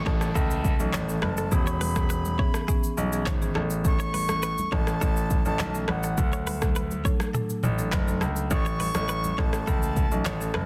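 A straight 4/4 afrobeats groove at 103 BPM drives this joyful, sunny clip in A major, built on an electronic afro-pop drum kit with a deep kick, crisp hats, handclaps, rim clicks, shaker and toms sitting up front, its snare roughened by soft clipping. A grand piano carries the bass line in its low register with a present, polished tone and short sustain, while a marimba played with medium hard mallets fills in woody, dark, smooth accompaniment. In the background, a clean, twangy electric guitar recorded direct repeats a bright, picked riff through a digital delay, and very quiet congas with a thin, close and dry skin join at 0.4 seconds. Above it all, an airy silver concert flute sings the melody with a straight tone and a chiffy attack, sounding distant and slightly unsteady. A very quiet electronic downlifter sounds until 3.8 seconds as the harmony moves from A to E6, back to A, then on to D before returning to A, all framed by a dry sound and a dense, heavily limited modern master.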